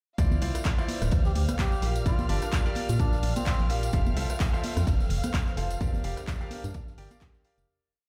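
A four-on-the-floor electronic kick drives this soulful, bittersweet piano house piece at 128 BPM in D minor, with a gentle 16th-note swing. Punchy analog drum machine claps, rim clicks and hats, bright, dry tambourine and congas, and a very quiet, dark looped breakbeat from a reggae kit fill out the groove. Beneath them, a hollow, organ-like FM bass plays a syncopated riff up front, while a clear concert grand piano carries a rhythmic chord riff through a digital delay over the progression of Dm9, Bb6, Fmaj7 and Gm7. A rich chamber violin section holds high notes in the background, and a warbling, nostalgic tape-like pad with chorus and slowly shifting chords rises in softly, the strings, piano, bass and pad all breathing with sidechain pumping. From 1.3 to 3.7 seconds a mellow, breathy cup-muted trumpet adds short jazz phrases with light vibrato, and the whole piece, set in a big, reverberant room, fades out from 5.2 seconds.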